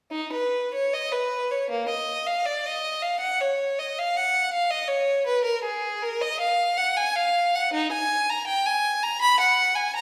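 A solemn, grave classical passage in the manner of a baroque suite movement, cut from a longer piece, features a lone bowed violin up front, its clear, smooth and even tone shaded with vibrato and phrased with rubato, ringing in a wet recital hall reverb heard from further back in the room.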